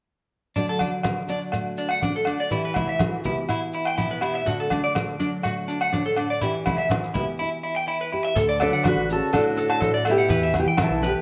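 Highlife guitar band music at 123 BPM in 4/4 with a straight feel, this joyful, danceable passage in D major is cut from a longer piece and moves between D and Em chords. A full-bodied, thumb-plucked nylon-string guitar supplies the accompaniment with audible finger squeak, while an up-front clean electric guitar plays picked arpeggios bathed in spring reverb. Thick-skinned, low-tuned congas, a grainy shekere and ringing, close agogo bells drive the percussion from the start. At 8.4 seconds a round fingered electric bass and a very quiet, woody cajon with faint snares join, and at 8.6 seconds a dark, fingerpicked steel-string acoustic guitar takes the melody up front while a breathy trombone with light vibrato adds a jazz-style second line in the background. The band plays live in one room, with a moderate stone room reverb lending the sound a natural, lively space.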